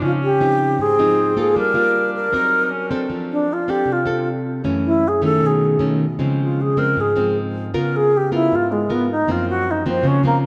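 A relaxed, romantic bossa nova at 156 BPM opens with a pure, up-front alto flute singing the melody over fingerpicked, full-bodied nylon-string guitar, while a distant jazz-style trumpet adds a quiet second line of scooped notes until 3.1 seconds, after which the flute, with its vibrato, solos over chords moving from Dbmaj9 to Gbmaj7#11, the whole heard from further back in a long plate reverb.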